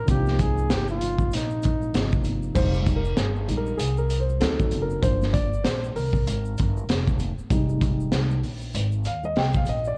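Jazz-hop with a mellow, nocturnal mood, cut from a longer piece and soaked in the warble and pitch drift of worn cassette tape. A breathy flugelhorn with vibrato and scooped notes opens over a dark concert grand piano and a woody pizzicato upright bass, then drops out at 2.3 seconds so the piano can take a solo from 2.6 seconds over chords moving from Fm9 through D7b9 and Gm7. Up front, a crunchy, saturated breakbeat kit with a punchy kick, high-tuned snare and rolled-off top drives the groove, while a ringing tube shaker and congas sit close and dry in the background.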